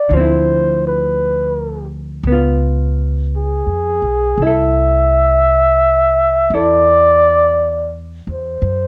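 Romantic and intimate, this slow jazz ballad at 56 BPM swings gently in 4/4 as a breathy, mellow flugelhorn carries the melody up front with light vibrato and scooped notes, moving over chords of Dm9, C#7 and C69. A dark, clean hollow-body electric guitar, fingered, and the flugelhorn both carry a cassette-tape character, while a woody, pizzicato upright bass sits up front underneath. A wet small-room reverb and the homespun feel of a cassette recording frame this brief cut from a longer piece, which runs just under 9 seconds.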